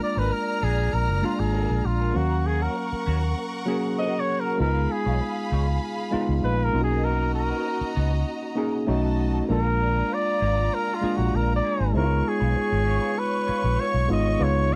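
Soul at 98 BPM in a straight 4/4, this cinematic, silky passage is cut from a longer piece. A clear, punchy flugelhorn carries the melody up front with vintage vibrato, taking a solo from the start until 11.9 seconds. Alongside it, a lush bowed string section plays a woody second line, while a worn, slightly out-of-tune tine electric piano supplies clean accompaniment through a combo amp. A bright, twangy electric guitar sits in the background with a slightly broken-up riff colored by wah and subtle chorus. A dark, round, foam-muted fingered bass enters up front at 0.2 seconds, moving under chords that run from Bb7 and Ebm7 through Db9, Bmaj7, B9 and back to Bb7 before settling on Db7 at 11.9 seconds, all in a dry, close 1970s-style studio sound.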